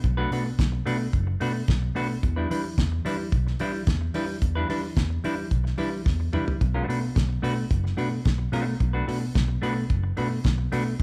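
A dry, up-front damped 70s drum kit with a fat snare and tight kick drives this sultry, glamorous disco excerpt at 110 BPM in B minor, working hi-hat and toms alongside a short fill at 6.1 seconds. A round, amped fingered electric bass and a clean semi-hollow electric guitar with a hollow-body tone play throughout, moving from Bm7 to Em7 and back to Bm7. The band sounds as if it is playing live in one room, set in a moderate large studio reverb.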